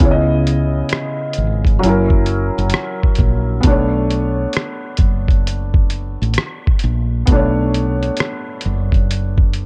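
Lo-fi hip hop in a nostalgic, reflective mood, this brief cut from a longer piece sets a felt-muted upright piano, soft and intimate with a cassette-tape haze and filtered top end, over a dark, round fretless electric bass touched with analog chorus and a compressed sampler-style kit of hi-hat, rim click and thumpy, muffled kick, all three parts up front in a digital ambience, swung on the sixteenths as the chords move from C#m9 to F#7 to Bm9.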